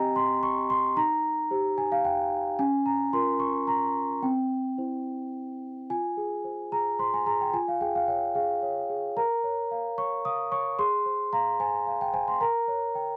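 Classical lullaby for solo large celesta in F minor at 111 BPM in 3/4 with a straight, wistful and fragile feel, its bell-like, mellow, dark tone ringing up front across a range from C4 to Eb6 with light reverb in a dry, close 1970s-style studio sound, moving from an opening section over Cm and a C chord into a second section from 5.9 seconds that opens on Fm and comes to rest on Gdim/Bb, cut from a longer piece.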